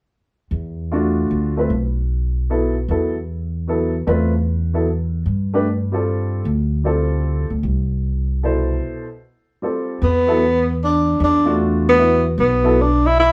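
A woody pizzicato upright bass opens this hypnotic, intense modal jazz excerpt at 0.5 s, joined by a clear upright piano accompanying on E9sus4 and G9sus4 in a swung 3/4 at 152 BPM, and after a break at 8.8 s, a breathy, punchy tenor saxophone with vibrato and scooped notes takes an up-front solo from 10.0 s, all captured as a live band in one room with wet studio reverb.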